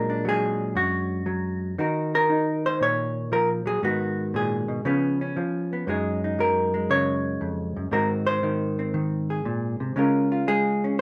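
A swung 4/4 at 117 BPM carries this moody, cool solo jazz fragment, cut from a longer piece, in which a dark, clean, fingered electric hollow-body guitar sits up front in light reverb with a softened top end, spanning F2 to Db5 as it moves through rich chords from Bbaug7 and Ebm9 to a Gb69 and settles on Db6 at 10.0 seconds.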